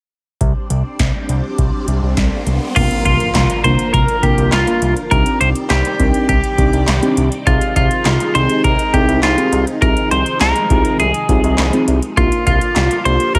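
Cut from a longer synth-pop piece in C minor at 102 BPM, this cool, melancholic passage opens at 0.4 s with a swirling, phased string machine sustaining chords over a fat, detuned sawtooth bass on C2 with a moving notch filter, and an up-front analog drum machine whose deep kick, punchy snare, handclaps and metallic hats sit in gated reverb. A background riser leads into an impact at 2.8 s, where a bright, twangy twelve-string electric guitar takes the melody with delay, joined by a soft, round FM electric piano treated with chorus and phaser. The chords move from Csus2 through Bb/C, Cmadd9, Abmaj7/C and Fm7/C, all resting on C, inside a light digital ambience.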